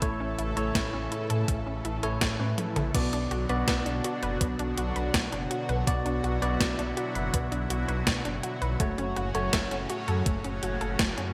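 A thumpy, tape-warm electronic kick and an up-front 80s digital drum machine with gated-reverb snare, hi-hat, toms and crash set a straight 82 BPM pulse in 4/4, with a drum fill at 2.6 seconds leading into a new section at 2.9 seconds. Beneath them a deep, rumbling detuned saw bass pumps with sidechain compression, while a lush, thick unison pad with chorus and phaser sustains chords that move from A to B minor and later to F# minor at 8.8 seconds. A round analog pluck with chorus and delay spins arpeggios in the background, and a bell-like, clean tine electric piano adds delayed stabs, all bathed in plate reverb for a nocturnal, nostalgic synthwave excerpt with bright 1980s-style digital sheen.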